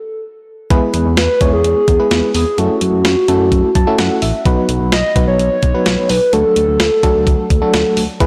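A hollow, woody clarinet-like synth lead with chorus, phaser and delay opens alone before a thumpy, up-front 12-bit drum machine, a dark chorused pulse-and-sawtooth synth bass and a tremolo-laden FM electric piano join at 0.7 seconds in this nostalgic, wistful 128 BPM synth-pop excerpt in E major, moving through E, F#m7, B and D with an electric piano fill at 3.5 seconds, all bathed in lush hall reverb and a blown-out, overdriven recording.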